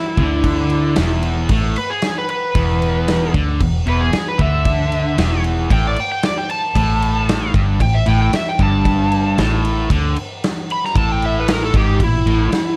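An overdriven slide guitar opens this gritty, swaggering blues rock and southern rock passage, cut from a longer piece, and carries a solo for its full 12.8 seconds. Played with fingerpicks, the slide line sits up front with a bright edge in a high register. Moments after the start, a distorted electric guitar enters with a low, picked riff, double-tracked and compressed so it stands firm beside the solo. A vintage fingered electric bass fills the bottom with a dark, round, foam-muted tone, and a big acoustic rock kit, recorded in a studio room, drives a straight four-beat feel with a punchy kick, a medium-tuned snare and crash cymbal, its sound smooth and rolled off at the top. The harmony moves from E5 to Gsus2 at 6.8 seconds and settles on Eadd11 near the end, all inside a light reverb that wraps the power trio.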